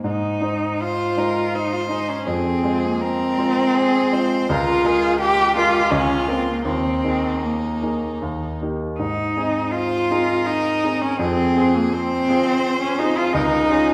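A rich, up-front cello carries the second line from the start, its bowed tone shaped by expressive vibrato and portamento. This is a slow, romantic classical movement for piano trio in Ab major, moving in 3/4 at 76-88 BPM with a tender, lyrical rubato. A warm grand piano supplies a present, polished accompaniment from the opening. At 0.8 seconds a single violin enters with the melody, its clear, bowed line smooth and even with vibrato and a close placement. The harmony moves through Ab, Fm, Db6 and Ebsus4 before settling on Eb and returning to Ab, and the recital-hall reverb of a church or concert hall surrounds the trio in this short section cut from a longer piece.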